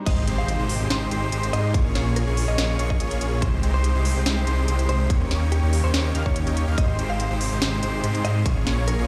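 Future bass drop in a bright, euphoric half-time feel, where huge detuned supersaw chords and a thick, saturated detuned saw bass pump against a punchy layered kick and a trap kit with a sharp snare and crisp hats, while a clean direct-recorded electric guitar carries a melody with lush chorus and digital delay, an airy, dreamy lead arpeggiates high above, and a very quiet bowed string section sustains chords, joined at the start by a faint electronic swell and impact that ends at 1.7 seconds, all set in a bare, roomy space on this cut from a longer piece.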